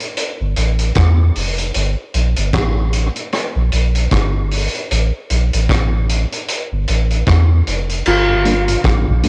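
A muffled, cassette-worn home recording in a small room carries this spacious, deep dub reggae excerpt: a gritty vintage drum kit with dark cymbals and a tight kick is joined at 0.4 seconds by a round, up-front sub bass with tube saturation, before a clean, fingered electric guitar soaked in dub echo appears at 8.1 seconds and a flute-like tonewheel organ with key click and slow rotary speaker drifts in at 8.3 seconds.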